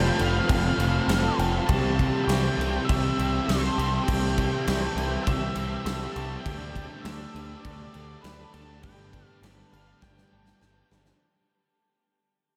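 Shoegaze and dream pop rock in a straight 4/4, this blissful, hazy passage drifts through F, C, Dsus4 and Gadd9 as the mix fades out, soaked in an enormous ambient reverb. A dark lead guitar with octave fuzz and tape echo carries the melody until 10.9 seconds, over a smooth, detuned sawtooth pad that holds sustained chords with chorus in the background. A fingerpicked twelve-string acoustic guitar adds shimmering, octave-doubled arpeggios through analog chorus and tape echo, while a twangy clean electric guitar plays a riff through reverse reverb. Two overdriven guitars also play riffs: a crunchy one coated in lush chorus sits back in the mix, and a very quiet double-tracked one lingers beneath it. Up front, a growling picked electric bass with overdrive sounds direct and amped, and a huge arena drum kit enters at 0.2 seconds with a punchy kick, a medium-tuned snare and bright cymbals in a big natural room, closing with a fill at 10.0 seconds.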